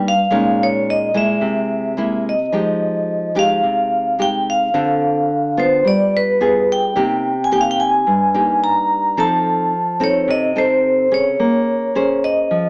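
A straight 4/4 bossa nova pulse at 108 BPM carries this intimate, wistful piece in F minor, cut from a longer performance. The vibraphone takes the melody throughout, struck with medium hard mallets for a metallic, ringing, bright tone with a fast motor vibrato, close-miked, dry and full, sitting up front in the mix. Beneath it, a fingerpicked nylon-string guitar plays the accompaniment in a classical style, its acoustic, woody sound coloured by old strings and also placed up front. The harmony moves through rich extended chords, opening on Bbm7 and C7b13 before the second section arrives at 2.5 seconds on Fm9, then passing through Dm7, G7b9, Cm7 and F7 to settle on Bbm9 at 11.4 seconds. A moderate studio reverb surrounds the pair, and the overall sound has the character of a small speaker.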